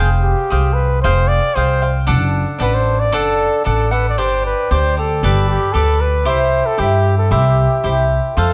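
Proud and festive, this brief mariachi-flavored Mexican folk fragment in a rubato 2/4 carries a mellow, classical-style solo trumpet melody with light vibrato and a smooth top over crisp, picked acoustic cavaquinho accompaniment and a woody, growly pizzicato upright bass sitting up front, moving through Fmadd9, D/F#, Gsus4 and Gadd9 before landing on C in a close, detailed recording with light reverb.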